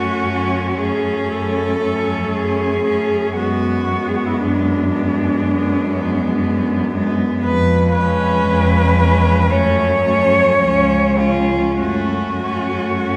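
Elegiac and yearning, this classical fragment for cello ensemble unfolds in a rubato 4/4, with a bowed cello singing the melody up front and a bass cello also forward, both sharing the accompaniment cello's rich tone, soft attack, vibrato and expressive portamento, while a clear, focused cello traces a close second line, the ensemble heard from further back in a wet concert hall.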